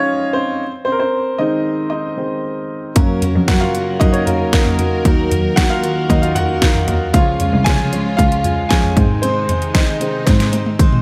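Warm and anthemic, this piano-driven pop passage moves at a straight 115 BPM in 4/4, with an open, long-sustaining baby grand up front, playing alone over Db and Ab chords before the other parts join at 3.0 seconds. An overdriven electronic drum kit with a punchy kick and a deep snare then enters, while a veiled, muted cello bows the bass line with vibrato and portamento; a full-bodied picked steel-string acoustic guitar riff and lush studio strings holding sustained chords sit in the background. The harmony moves through Gb, Ebm, Db and Ab, and a drum fill arrives at 10.3 seconds, all set in light reverb and small room ambience.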